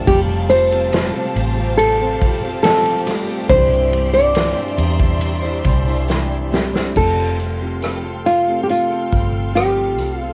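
Hopeful and emotional, this 70 BPM pop ballad in F major, cut from a longer piece and captured as a home cassette recording with light reverb, sets a woody, fingerpicked nylon-string guitar melody up front over a mellow felt-muted upright piano, lush bowed strings holding sustained chords, tape-echoed steel-string acoustic guitar arpeggios, a round, punchy foam-muted electric bass, a distant, roomy drum kit played with bundle sticks that adds a fill at 6.1 s, and a grainy egg shaker that drops out at 6.9 s, while the harmony moves from Fadd9 to Cadd9 and back to Fadd9.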